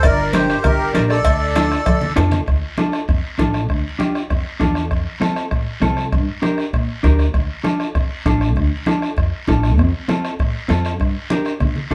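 Passionate and danceable, this cumbia moves at a brisk 197 BPM in straight 4/4 in D minor, cut from a longer piece and cycling through Gm, Dm and F. A reedy, sweet accordion with light tremolo tuning sits up front with the opening melody and drops out at 2.1 seconds, while the cowbell and timbales ring with a metal-shell bite, close and dry, in that opening stretch before falling away. An up-front, clean electric guitar, mellow and dark, fingered and compressed, comes in at 0.3 seconds and carries the accompaniment to the end. Underneath, a woody, growly pizzicato upright bass with steel strings anchors the low end beside a soft-beater bombo caught in a live room. Thick-skinned, damped congas with a saturated edge and a raspy, band-limited guiro keep the percussion busy throughout, and a drum fill at 11.3 seconds closes the passage. The band plays together in one room with moderate studio reverb, giving the groove a natural, lively sound.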